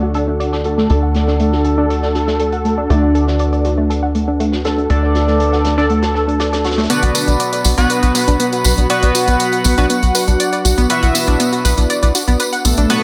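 Melodic techno with a hypnotic, melancholic mood, this short cut from a longer piece opens on a D chord, with a round, detuned analog pluck spinning arpeggios through chorus and analog delay while a sync-sweep polysynth adds edgy, nasal stabs. Underneath, a tight sequencer bass sits up front with a punchy, driving sawtooth-and-square tone, and a warbly tape-like pad hangs in the background, nostalgic and lo-fi with a slow attack and its own reverb. A loose indie drum kit with a fat snare and pumping room sound plays hi-hat and snare until 6.9 seconds, and a thick, nasal unison lead carries the melody from 0.6 seconds with vibrato and delay. At 6.9 seconds the harmony moves to B minor and a build-up begins, as a soft, smooth supersaw enters as a second line and filter sweeps run on both the pluck and the supersaw. An overdriven electronic hi-hat and a jingly, close tambourine take over the percussion from that point, set in an echo-heavy mix with light small-room ambience.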